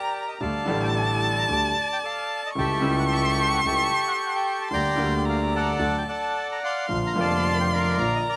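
Melancholic and sultry, this rubato tango excerpt at 111 BPM puts a reedy, airy bandoneon melody up front beside a bowed violin second line rich with vibrato and portamento, both carrying a slapback echo. A clear concert grand piano with audible action noise and long sustain, also echoed, plays the accompaniment, while a bowed double bass with a biting, intense tone holds the bass line, as the harmony moves through Dsus4, A7/C# and Gm/D to D. At 6.9 seconds a very quiet, dark studio string section adds expressive bowed stabs on Bb, and the whole recording sits dry in an outdoor setting with little reverb.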